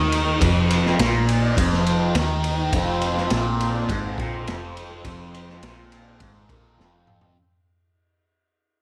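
Psychedelic rock with a hypnotic, trippy pull at 103 BPM in a straight 4/4, this brief excerpt cut from a longer piece rests on F as a bright, double-tracked fuzz guitar riff with phaser runs low from the start over a dark, round, foam-muted overdriven bass and a gritty, punchy garage drum kit of kick, snare, toms and ride that pumps in its small room. At 2.7 seconds a reedy, breathing pedal harmonium adds quiet sustained chords, while a moderate echo-chamber reverb gives the whole a small-room ambience. The piece fades out throughout, closing on a drum fill at 6.8 seconds.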